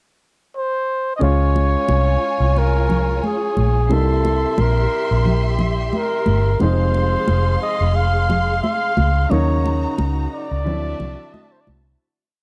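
Romantic and lush, this complete 1970s-style soul piece at 89 BPM in Db major opens with a breathy, intimate flugelhorn pickup at 0.6 seconds, before a round, foam-muted electric bass with slides, a baby grand piano holding drop2 chords with grace notes, a studio string section swelling long notes with vibrato and portamento, and bright, soft-handed congas slapping on two and playing open tones on four join at 1.2 seconds, the dry, close studio sound fading out from 9.3 seconds.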